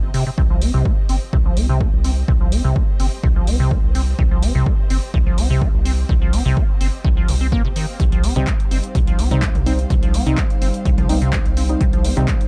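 A deep, round analog bass and a rich, smooth string section fading in from the background open this hypnotic, driving acid house excerpt in C minor at 126 BPM, with a squelchy, resonant square-wave acid riff under a filter sweep and dub echo, and the bass, strings and riff all pumping to the sidechain. A punchy, tape-warm analog drum machine of handclaps, hi-hat and toms enters at 0.1 s, joined by an electronic kick from 0.4 s, both re-recorded in a small room. At 8.4 s hollow, percussive organ stabs with chorus and dub echo arrive, followed at 8.6 s by a warbling, nostalgic lo-fi pad in the background that also pumps to the sidechain, all within a dark, dry mix.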